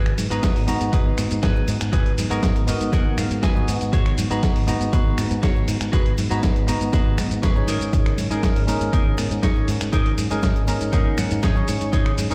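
Nu-disco with a cosmic, groovy pull, this excerpt from a longer piece rides a punchy, tape-warm electronic kick and a gritty, overdriven sampler-style soul kit of finger snaps, hi-hat, shaker and snare, with very quiet, dry congas, bongos and cabasa tucked beneath a bright fingered bass working its envelope filter, while a dark, picked clean electric guitar riff floats through lush chorus and digital delay with fills at 2.4 and 10.4 seconds, a bell-like tine electric piano pumps with sidechain and delay over G#m7 until a shift to G#sus4 at 7.7 seconds, and the whole mix sounds as though played on a big sound system in a bare stone room.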